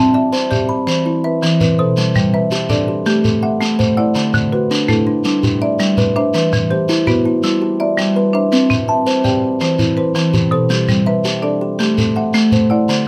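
Southern African traditional music in an mbira-style interlocking cycle, this warm, rippling excerpt moves at 110 BPM in a straight 12/8 feel in G major. An up-front kalimba rings out woody, thumb-plucked arpeggios while a bright, dry marimba struck with hard mallets adds full, percussive arpeggios of its own, and a grainy, mellow shekere enters at 0.3 seconds, sounding distant as if in a large room. Close, detailed microphones and light reverb frame a chord cycle that settles into a longer stretch from 2.0 seconds, moving through G, Am, D, Em and C.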